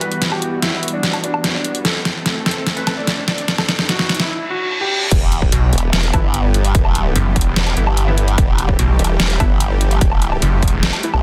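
A half-time heavy wobble dubstep cut, aggressive and weighty, where a soft felt-muted upright piano melody with tape echo floats over a lush, filter-swept supersaw pad, an overdriven dubstep drum kit with a deep snare, and a very quiet riser and reverse cymbal during the build-up, until the drop at 5.1 seconds unleashes a formant-sweep wobble bass and a punchy electronic kick drum, followed shortly by a snarling, growling distorted saw bass and then a bold orchestra-hit-like synth stab set in the background, all within a dense, heavily limited modern master.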